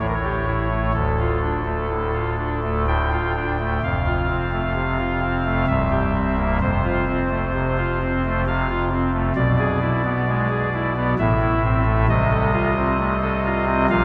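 In a slow 3/4 at 65 BPM with a freely pushed and pulled rubato, this grave, solemn classical chorale unfolds on a single pipe organ playing a soft reed solo stop. The oboe stop carries a baroque voicing, with a touch of chiff at the start of notes and a tremulant, and it spans from C1 up to G5. The organ sits up front, yet the listener seems placed further back in a church whose wet reverb lingers for about 3.3 seconds. The harmony moves from A7 to Dm and F, through C7 and E7/B to Am, and closes on F7/C at 12.1 seconds. This 14-second passage is cut from a longer piece.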